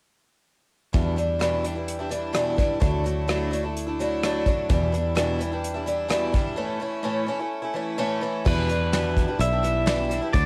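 A dusty home cassette recording with studio reverb opens on this reflective folk and heartland rock excerpt, moving at 128 BPM in E dorian. A shimmering, octave-doubled twelve-string acoustic guitar sits up front over a punchy, foam-muted fingered bass and an airy brush kit with dark cymbals and a fat snare, with the guitar and drums carrying cassette tape colour, cycling Em7, Dadd9 and A before a break at 6.6 seconds. At 8.5 seconds a bright, twangy pedal steel guitar, also on cassette tape, enters with volume swells and slide for the closing phrase.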